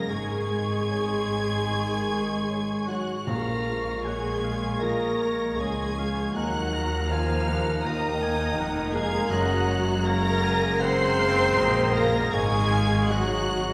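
A longing, sorrowful cinematic orchestral passage in free, rubato time, cut from a longer piece, opens with a lush, focused violin section singing the high melody over a softer second violin line, a clear, roomy oboe and a dark, very quiet clarinet, joined at 0.1 seconds by an airy flute ensemble, while smooth violas, a faint grand piano with long sustain, soft-edged distant French horns holding chords, a ringing fingerpicked harp, and bowed cellos and double basses fill the lower parts, with a very quiet, articulate hard-mallet timpani touch from 3.3 to 4.4 seconds, heard from further back in a wet, reverberant room.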